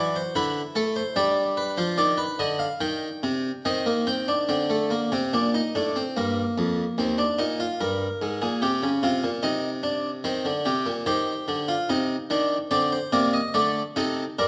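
Heard through a wet recital-hall reverb with some lossy compression artefacts, this short cut from a longer piece is a stately, elegant baroque-style three-part fugue for solo harpsichord at 73 BPM in a straight 4/4. The harpsichord sits up front, a brilliant, plucked French-style instrument with octave strings and a mid-forward tone, ranging from Eb2 to G5. Its harmony moves through D7, G and Cm, then a new section from 4.5 seconds opens on a bare D5 and passes through Gm, Gm7b5, Bb6/9 and Cm before returning to D5.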